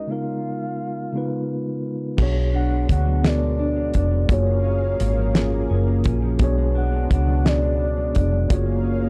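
A sensual, intimate slow R&B fragment in six-eight opens with a soft, round octave-layered synth lead with chorus and tremolo over a mellow tine electric piano and a foam-muted, punchy fingered bass with tube saturation, before a damped 70s drum kit with a fat snare, a dark clean electric guitar treated with phaser and tape echo, and a smooth detuned analog pad enter at 2.2 seconds in a dry, gritty studio sound.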